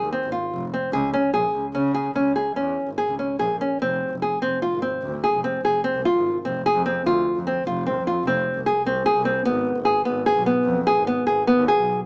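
Set in a straight-feeling 7/4 at 148 BPM, this pensive, hypnotic piece of contemporary chamber music, cut from a longer work, has a nylon-string guitar up front fingerpicking small, warm arpeggios over a close, earthy double bass bowed by a single player with a rich, airy tone. The harmony moves from Ab to Db5, then shifts at 3.8 seconds into a new section on Fm before moving to Abm at 9.5 seconds. A moderate studio reverb surrounds the pair, and the overall sound has the boxy quality of a small speaker.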